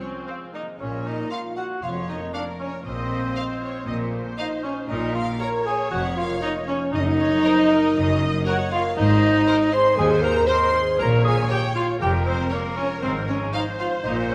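A straight 4/4 pulse at 118 BPM drives this playful, whimsical film cue, a sneaky and magical passage cut from a longer piece that sits in Bb minor before shifting to F minor at 9.0 s. A dark clarinet sounds only briefly in the background at the very start, and at 0.3 s a rich, vibrato-laden violin section takes the melody with a smooth, even, distant tone. A mellow, close-miked French horn section holds sustained chords, while a bright, fingerpicked concert harp rings out arpeggios in the background. Several second lines weave around the tune: a solo cor anglais with light vibrato and a roomy, distant quality, an airy, hollow silver flute tucked behind the ensemble, and a second violin section with a focused, smooth top. A clear viola section fills in the accompaniment, an intense cello section carries the bass, and a close, focused double bass section joins beneath it from 0.8 s. The chords move from Bbm through F7/Bb and Ebm/Gb to Ab and Bbm7, and a moderate scoring stage reverb gives the orchestra a spacious, polished finish.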